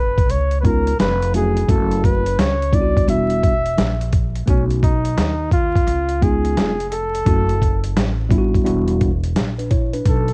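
A dusty home-cassette sound with vinyl crackle frames this cool, nocturnal jazz-hop cut at 86 BPM with a swung feel, where a gritty, compressed sampler-style drum kit with a thumpy kick sits up front over woody pizzicato upright bass and a worn, slightly out-of-tune tine electric piano entering at 0.6 seconds, while a veiled bucket-muted trumpet with light vibrato carries the melody and takes a smooth jazz solo from 4.5 seconds over a C#7, F#m7, Em9 and B9 progression.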